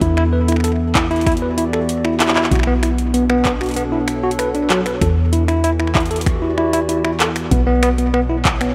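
A bright, bell-like tine electric piano sits up front playing arpeggios through tape echo in this eerie, glitchy IDM piece at 96 BPM in E dorian, which moves between Em7 and Bm7 across a short section cut from a longer track. Beneath it, a warbling, nostalgic lo-fi pad holds detuned sustained chords with chorus and its own reverb, while a round, woody FM bass adds soft, dark low notes. A booming analog drum machine with finger snaps, handclaps and metallic hi-hats, also run through tape echo, plays alongside a deep electronic kick re-recorded in a small room, all set in light digital ambience.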